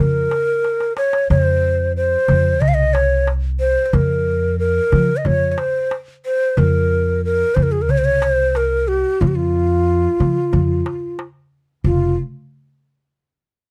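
A dry, close recording in a 1970s studio style frames this soulful, longing Arabic maqam ensemble passage in F maqam bayati, moving at 91 BPM in a straight 4/4, cut from a longer piece. Up front, a breathy, end-blown reed ney carries the melody with vibrato and a crisp attack, while a woody, growly pizzicato upright bass holds down the low end. A metal-shell darbuka played with soft hands enters at 0.3 seconds and adds a brief fill just after.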